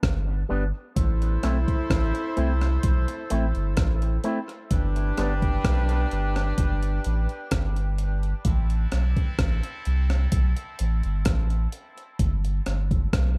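An echo-heavy, dry mix opens this spacious, deep dub reggae excerpt in A minor at 64 BPM, where a round sine sub bass and a gritty, compressed breakbeat kit with a thumpy kick sit up front, a bright, twangy, envelope-filtered electric guitar briefly sounds through dub echo from 0.5 seconds, and a distant horn section with light vibrato carries the second line from 1.0 seconds, while a filter sweep runs from 4.7 seconds as the chords move between G and A minor.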